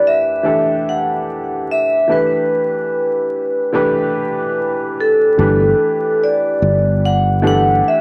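A ringing, metallic vibraphone carries the melody from the opening moment, struck with medium hard mallets and shimmering with a slow motor vibrato, its bright, airy tone softened by a low-pass filter and cassette tape coloring. Beneath it, a woody, slightly detuned upright piano supplies accompaniment with a smooth, vintage character and long sustain, also filtered to sit mellow and close. This is a mellow, nostalgic hip hop fragment at 73 BPM in 4/4, swung on the 16ths and tuned slightly flat to A4 = 438 Hz, moving from Em11 to Gadd9 in G major. At 5.4 seconds a round, up-front fretless electric bass arrives on a low G, its direct, amped sound thickened by tube saturation, before it stops at 7.8 seconds. Light reverb and a small room ambience frame the parts, while vinyl crackle and the feel of a home cassette recording lend the whole cut-down piece a worn, intimate glow.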